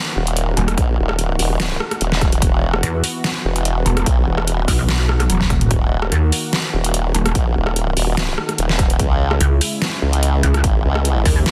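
A dense, heavily limited modern master with digital ambience frames this heavy, chaotic excerpt of wobble dubstep, cut from a longer piece and driven by a swung, half-time groove. Two overdriven wobble basses sit up front: one is a formant-sweep bass blending sawtooth and sine tones through a formant filter with chorus, and the other is a pulsing, detuned, saturated pluck bass with a sine core and the loudest presence in the mix. Alongside them, an electronic kick drum hits with a punchy, overdriven thump, while a dubstep drum kit of hi-hat, rim click, deep snare and toms, layered and re-recorded in a small room, rides up front. A drum fill breaks through from 5.3 to 5.7 seconds. Far in the background, a lush unison pad of thick, warbling, vintage sawtooth voices holds slow-attack chords from 0.0 to 11.5 seconds, pumping against the sidechain as the harmony moves from Ebm through Esus2 and back before settling on Dbm.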